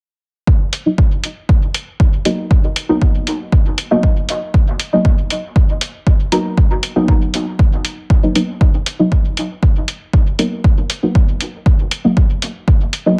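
Nocturnal and hypnotic, this short dub techno passage, cut from a longer piece, moves at 118 BPM in a straight 4/4 and rests on a single F#add11 chord throughout. An overdriven, layered electronic kick drum sits up front from 0.5 seconds, deep and produced, with a large-room character around it. An electronic hi-hat joins at 0.7 seconds, sampler-style, compressed and pitched down, so it sounds muffled rather than bright, and it sits quieter in the mix than the kick. The deep mellow chord stab enters at 0.9 seconds, a soft, nasal, dark tone with a fast attack and short decay, blending triangle, sawtooth and sine waves into a plucked, filtered shape. Chorus, phaser, dub echo and sidechain pumping surround the stab, giving its repeats a breathing, trailing quality. Light reverb and a digital ambience frame the whole passage in a dim, spacious setting.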